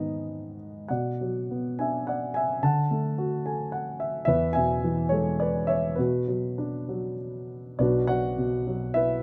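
Cool and moody, this short cut from a longer classical piece is a lyrical solo for a dark baby grand piano, moving in a flexible, rubato 3/4. The mellow, natural piano sits up front with a light touch of reverb, and a brief fill between 3.2 and 4.3 seconds colours the passage as the harmony shifts from Bm through D to E.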